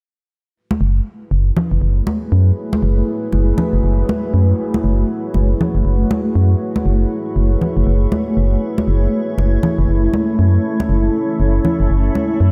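Swung sixteenths at 119 BPM drive this deep, smooth deep house excerpt in F# minor, where close, dry congas with soft hands enter at 0.7 s, an up-front, hollow, organ-like FM bass with tube saturation carries the low end, and a moody detuned sawtooth pad with chorus holds sustained chords over F#m11 before shifting to A/F# at 8.6 s while a cloudy, evolving granular pad adds texture, all soaked in a dreamy hall reverb.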